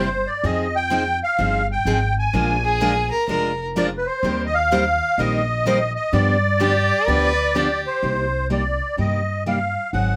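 Fiery and bittersweet, this short cut from a longer acoustic string swing piece in C minor moves at 126 BPM with a lilting swung feel, the chords passing from Fm9 through Bb7, Eb6 and G7 before settling on Cm7 at 8.0 s. A reedy, shimmering musette accordion carries the melody up front over a woody, thumpy pizzicato upright bass on gut strings and two picked steel-string guitars. One is a warm dreadnought, and the other is a bright, boxy parlour with fresh strings and audible finger squeak that drops out at 7.7 s. A rich, focused bowed violin with vibrato adds brief second-line phrases at 2.6 s and again at 6.6 s, all set in light reverb.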